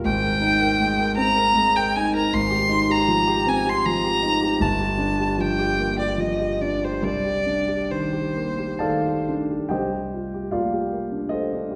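Bathed in the wet reverb of a church or concert hall, this excerpt from a longer impressionist classical piece for violin and grand piano drifts in a mysterious, wistful C minor at a rubato 62 to 80 BPM in 3/4. Up front, a single bowed violin sings a smooth, even melody with rich vibrato, while a dark, mellow concert grand gives deep-bass accompaniment through lush chords such as Abmaj9, Gm7 and Cm9. The violin falls away at 9.3 seconds, and the piano carries on alone into a new section until 11.8 seconds.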